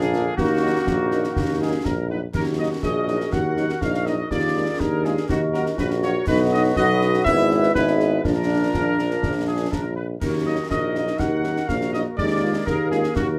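This stern, martial military-style march for wind band opens with the full ensemble at once. A clear trumpet section carries the melody in Eb minor while woodwinds and a warm, soft-attacked euphonium play a second line, over concert snare, bass drum and clash cymbals marking a straight 2/4 at 122 BPM. Sustained trombone chords sit distant in the background before dropping out at 2.1 seconds, and a roomy French horn section, also set back, supplies accompaniment from 0.1 seconds. The tuba is the most forward voice, a vintage-toned solo bass line with light vibrato, while the woodwinds play tight and gentle with a touch of vibrato of their own. The drums carry dark cymbals and a small-room acoustic character, and light reverb surrounds the band. The harmony moves mostly between Ebm and Bb7/Eb, passing through B, E/G# and Bb in this short cut from a longer piece.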